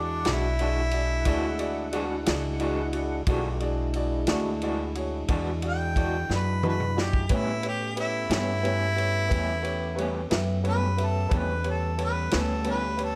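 Laid-back and gritty, this slow 12/8 blues excerpt features a harmonica soloing up front with scooped notes, carrying a distant, roomy jazz-style tone. Beneath it sit a woody, short-sustain upright piano, a fat, lightly overdriven tonewheel organ with key click, chorus vibrato and a slow rotary speaker, and a thumpy pizzicato upright bass on gut strings. A punchy vintage drum kit with dark cymbals plays a fill from 6.3 to 7.3 seconds, just before the harmony moves from E9 to A9, while a slightly broken-up, lo-fi electric guitar with tremolo adds picked accompaniment, all set in light reverb.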